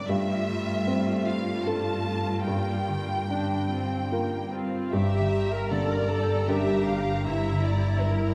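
From the first moment of this short cinematic cue, a felt-muted upright piano offers soft, intimate accompaniment, while a violin section carries the sorrowful melody, a smooth, even viola section fills the middle and a focused cello section anchors the bass. A concert harp rings bright, fingerpicked arpeggios in the background, adding glints of light to the bittersweet mood. The pulse falls in three, loosened by rubato so the beats arrive unevenly. At 4.9 seconds a lush symphonic violin section adds a second line, while a double bass section with expressive portamento deepens the low end from the background. The sound is close and detailed under a light reverb, letting the bowed vibrato of the strings and the thin felt of the piano come through clearly.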